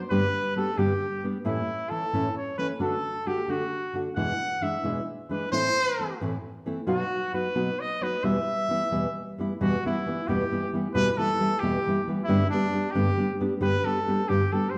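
A clear, distant trumpet in classical style sings the solo melody up front in this passionate, dramatic Mexican folk piece in E minor, flowing with rubato at 89 BPM in 6/8 over a full-bodied, fingerpicked nylon-string guitar whose deep classical accompaniment moves through G, A, D, E7, Am and B to Em at 8.2 seconds and G at 12.3 seconds, the whole fragment set in a wet recital-hall reverb.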